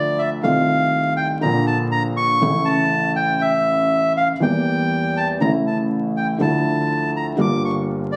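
Captured on a phone in a club with a short, moderate reverb and a layer of vinyl crackle, this tense, dramatic tango fragment moves at 121 BPM in 4/4 with a rubato feel. A reedy, smooth bandoneon carries the melody up front, while a dark grand piano supplies mellow, intimate accompaniment with audible action noise and a vintage character. Beneath them a very quiet pizzicato upright bass adds a woody, thumpy pulse as the harmony moves from F7/C through Edim to Dmadd9 and Gm7.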